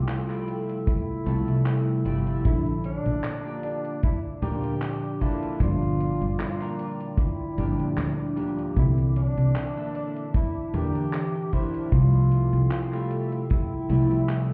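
A swung 76 BPM groove in 4/4 anchors this hazy, nostalgic vaporwave piece, cut from a longer work, with a detuned 8-bit drum machine's handclaps and hi-hat starting at 0.1 s and a dry, tight kick joining at 0.9 s, while a round, punchy fretless bass with tube saturation sits up front. Warbling lo-fi synth keys carry the accompaniment with lush chorus and 12-bit sampler grit, a detuned tape-like pad sustains chords from the background, and a bright, twangy guitar at the edge of break-up plays a riff through chorus and analog delay. A breathy, whispered tenor saxophone with vibrato and scooped notes takes the melody over chords moving from Fmaj9/C through Bbmaj7, Gm7 and C13, all heard muffled as if through a wall on cassette tape in a stone room.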